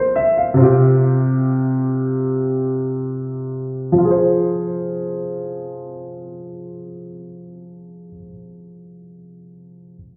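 Hip hop in free time and F minor, this menacing, tense fragment of a longer piece opens with a dark, boxy concert grand piano stating a brief melody between C5 and F5 for only the first 0.6 seconds, blurred by a low-pass filter and tape echo. Underneath, an intimate, felt-muted upright piano carries the accompaniment through 10.0 seconds, soft and mellow up front, as the harmony moves from Fm to Csus4 and back to Fm at 4.0 seconds. A filter sweep runs over the first 4.0 seconds, and the whole mix sounds muffled, as if heard through a wall, with stone room reverb and a dulled top end.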